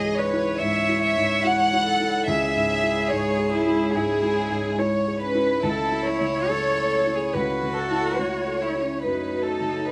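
Fragile and melancholic, this short passage of neoclassical piano and strings drifts at 71 BPM in C# minor with a rubato feel, moving from C#m through A/C# to F#m near 9.0 seconds. A chamber violin section carries the melody up front, its sound intimate and warm, with light vibrato, a soft attack and the gentle sul tasto tone of bowing over the fingerboard. Beneath it a single cello plays a second line, close and airy in the bow, with a soft attack and vibrato. A felt-muted upright piano supplies the accompaniment, also up front, its tone mellow, dark and thickly damped, reaching down to the low register. In the background, a hollow, flute-like pad holds sustained chords with a slow attack and a touch of chorus. The ensemble plays live together in a large studio, and a moderate reverb gives the room a natural sense of space.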